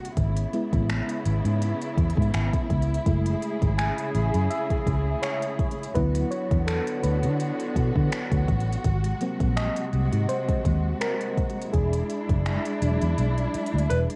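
This dry home cassette recording, cut from a longer piece, carries a late-night, moody contemporary R&B feel with a light swing. An FM electric piano with tremolo takes the lead from the first second, its mellow, fast-attack notes decaying over a noise layer as it moves through C#m7/G#, F#m9, D6, G#7 and E7. Beneath it, a lush bowed string section holds sustained chords with expressive vibrato and a smooth top. A produced electronic drum kit sits up front with finger snaps, smooth hats and a soft kick, its tape-warm tone re-recorded in a large room, and it plays a fill from 13.2 seconds. A dark, round, foam-muted fingered electric bass sits up front, amped and prominent, while a clear baby grand piano sounds a single B4 at 13.9 seconds, just before the recording cuts off.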